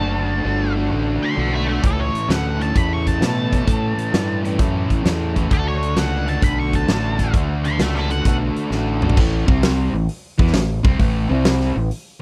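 Swaggering and raunchy, this cut from a longer blues rock and southern rock power-trio track rides a swung 4/4 groove, with a dark octave-fuzz lead guitar carrying the melody through wah and distortion until 8.4 seconds over a crunchy, double-tracked overdriven guitar riff and a growling, overdriven fingered electric bass. A huge, natural-sounding arena drum kit with a fat snare and punchy kick enters at 1.8 seconds, and a drum fill at 8.7 seconds ushers in a new section that moves between A5 and C5 power chords. The sound is dry and close in a 1970s studio style, with the drums, rhythm guitar and bass all up front.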